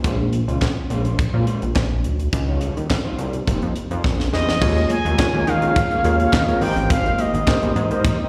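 Heard through a venue's PA with light recital-hall reverb, this danceable early-eighties boogie funk excerpt rides a tight drum kit with a high-tuned snare and handclaps, a glossy, evolving chorused synth bass and a dark, slightly broken-up guitar riff in the background; a smooth, resonant synth lead enters up front at 4.3 s, joined at 4.6 s after a drum fill by barky, overdriven electric piano with fast tremolo and ringing, high-tuned congas, while a very quiet, round synth brass line slips in at 5.6 s.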